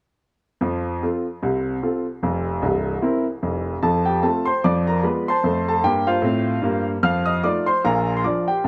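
Heard through worn, warbling cassette tape in a wet studio room, this exuberant, playful stride jazz fragment, cut from a longer piece, features a brilliant, woody upright piano playing solo from 0.6 to 8.7 seconds, up front and touched with analog delay as its long-sustaining tones span from the deep bass to the high treble over a swung 4/4 feel.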